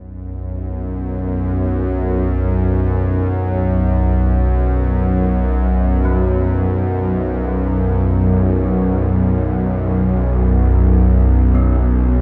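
Dark and desolate, this dark ambient drone in free time is cut from a longer piece, with a tense, string-like bowed drone sitting low and up front from the start, its detuned sawtooth edge, noise layer and vibrato sustained in a bright haze of built-in reverb, until at 6.0 seconds a very quiet gamelan-type bronze metallophone joins with ringing arpeggios whose paired tuning produces shimmering beats in a boxy small room, all set within a wet cathedral reverb of 5.2 seconds.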